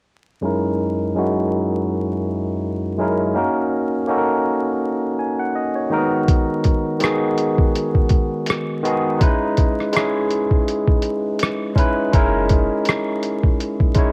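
Lo-fi hip hop with a nostalgic, melancholic mood, cut from a longer piece, where a barky, bright tine electric piano plays up front through a low-pass filter sweep and cassette tape from 0.4 seconds, a muffled, pitched-down sampler-style drum kit with a thumpy kick, hi-hat and rim click joins at 6.3 seconds, and a deep, round sine sub bass sounds briefly at 12.1 seconds, all set in a moderate spring reverb with the vinyl crackle of a home cassette recording.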